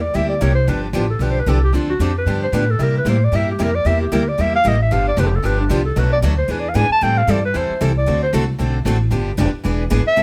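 With light reverb, this charming, lively stretch of acoustic jazz manouche swings at 228 BPM in G mixolydian, as a breathy, mellow clarinet solos up front with subtone, vibrato and scooped notes over a woody, thumpy pizzicato upright bass on gut strings, a warm picked concert guitar with finger squeak, and a bright, boxy parlour guitar with fresh strings.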